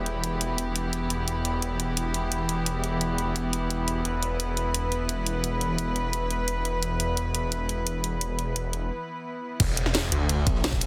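A dense, heavily limited modern mix with light small-room reverb opens this short cut from a dark, technical drum and bass track in E minor at 173 BPM, tense and futuristic in mood. A rich chamber string section, bowed with light vibrato and an earthy, smooth top, holds sustained chords up front, its sound pumping against the sidechain. Beneath it a thick, swirling detuned saw bass with a phaser and tube saturation sits up front, while an up-front drum and bass kit drives the groove with a cracking, softly clipped snare, hi-hat and crash cymbal. After a brief break, the drop lands at 9.6 seconds, where the harmony shifts from E minor to an E power chord. Here an overdriven, knocking electronic kick enters, joined by a very quiet, gritty breakbeat kit with a high-tuned snare and ride cymbal and by a faint electronic impact.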